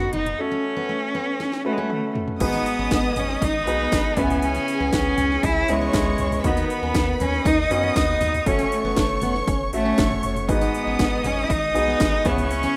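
Driving and bittersweet, this piano-driven pop excerpt at 119 BPM sets a rich, up-front bowed cello melody with vibrato over a clear concert grand piano with audible action noise, a deep round analog bass, a dark picked steel-string acoustic guitar riff in the background and a punchy, overdriven house drum kit that fills at 1.4 seconds before a lush violin section enters at 2.4 seconds, all in a rough home demo mix with moderate studio reverb.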